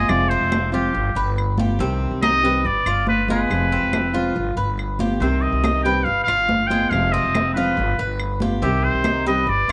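A nasal, straight-muted trumpet leads up front in a bright, vintage jazz style, over fingerpicked classical nylon-string guitar, a metallic, double-strung Cuban tres picking arpeggios, and a thumpy, dark upright bass plucked on gut strings. From 0.1 seconds, ringing high-tuned congas and close, dry woody claves join in the background, driving a danceable, sultry Cuban son and guajira groove as the chords cycle through Fm, G7 and Cm. Cut from a longer piece, it sits in a small room with light reverb.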